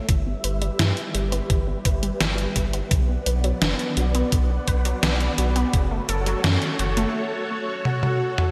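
Synthwave at 85 BPM in E dorian, cinematic and nostalgic, built on a lush vintage string machine holding sustained chords through ensemble chorus and sidechain pumping, while a bright, punchy unison pluck plays arpeggios through digital delay, with filter sweeps moving across both over a chord path of Em/G, Bm and F#m. A round, deep analog bass sits up front alongside a thumpy, tape-flavoured electronic kick that stops at 5.9 seconds, and a detuned 8-bit drum machine supplies hi-hat, a medium-tuned snare and toms under gated reverb, ending in a drum fill from 7.9 seconds. In those closing moments a smooth, full-bodied supersaw enters on a single F#4, all set in a wet hall reverb with bright 1980s-style digital production.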